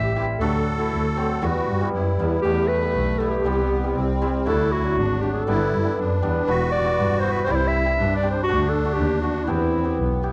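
Opening with a warm, classical-style clarinet taking a solo over the first 2.4 seconds, its melody touched by slapback echo, this festive yet bittersweet klezmer passage in E minor moves at 119 BPM in a straight 2/4: a reedy, shimmering musette accordion carries a second line, a ringing hammered dulcimer accompanies, and a bright, bowed double bass with vibrato sits up front, captured in a dry, close 1970s-style studio sound as the harmony cycles through C, D, G and Em.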